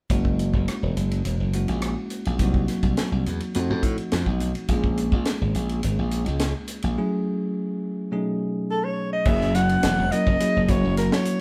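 Soaring and funky, this electric jazz fusion excerpt pairs a bell-like tine electric piano and a glassy, punchy slap bass over a tight funk drum kit with a high-tuned snare, before a breathy, whispered soprano saxophone enters at 8.7 seconds with scooped notes and light vibrato, all heard as a band playing live in one room with light reverb.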